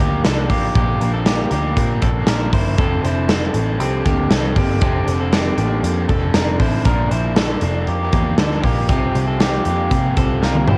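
Jangly indie pop at 118 BPM in a straight 4/4, youthful and bright, cut from a longer piece and caught on a home cassette recording with little reverb. A raw, overdriven garage guitar plays picked accompaniment while a dark, slightly broken-up electric guitar picks arpeggios through spring reverb and analog delay, over a round, foam-muted picked bass, as the harmony moves from F6 to Csus4 at 8.9 seconds. A big, punchy rock drum kit sits up front from 0.2 seconds, closing with a fill at 10.4 seconds.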